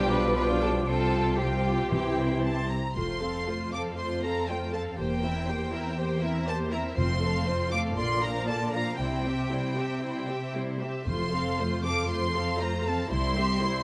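A lush, smooth violin section carries the melody high above a darker, woody second violin line in this spirited, graceful classical-period orchestral movement in F major, taken at a quick 118 BPM in 4/4 with a rubato feel. For the first 2.7 seconds, an airy, very quiet flute ensemble, a clear but distant oboe, a mellow bassoon and a background French horn section add color over soft-attack violas, a focused cello section and a distant double bass section. Timpani with calf heads and medium mallets enter at 1.9 s and return twice later, all heard through close, detailed microphones in a moderate concert hall reverb.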